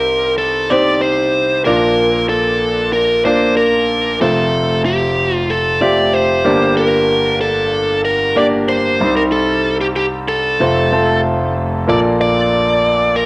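A biting, bright electric lead guitar carries the melody up front, its picked, overdriven tone colored by cassette tape grit and a tape echo as it moves between G4 and D5. Beside it, a clear concert grand piano supplies the accompaniment, natural in tone with deep bass reaching down to F1 and a long sustain, also sitting up front and carrying the same cassette tape coloring. This glossy, uplifting pop instrumental moves at 94 BPM in a straight 4/4 feel in Bb major, with both parts playing throughout the 13.3-second cut from a longer piece. The harmony travels through Cm, Bb, F and Gm before returning to Cm and F, then settles onto a Bbmaj7 as a new section opens at 11.9 seconds. A short, wet studio reverb surrounds the pair, and the home cassette recording lends the whole a homespun tape character.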